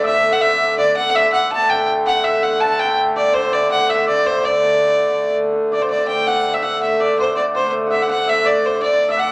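Rustic and festive, this brief cut from a longer medieval dance moves at 164 BPM in a straight 3/4, set in D mixolydian and tuned slightly high with A4 at 441 Hz. A single rich fiddle carries the melody up front, its biting, earthy tone touched with light vibrato and an airy bow, while a shimmering, bright hammered dulcimer rings out a second line in the same high register and a dark, nasal, reedy hurdy-gurdy with a smooth top holds a low drone. All three play throughout, passing from a first section into a second at 5.5 seconds, heard in a wet club reverb with vinyl crackle beneath.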